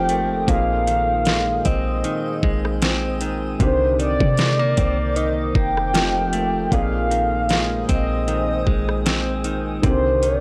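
A lightly swung groove from a smooth R&B drum kit enters at 0.1 s, up front with a knocking kick, deep snare, metallic hats and rim clicks carrying vintage 12-bit sampler grit, beside a boomy, sine-toned 808-style bass with a fast attack. Over it, a round, horn-like synth lead with chorus and vibrato carries the melody, while a compressed, direct-recorded electric guitar picks arpeggios and a dark, intimate baby grand piano with audible action noise accompanies in the background. A blurred granular cloud pad with built-in reverb and sidechain pumping holds sustained chords through this gritty, late-night contemporary R&B excerpt full of longing, moving through Bb9sus4, Cm9 and F9.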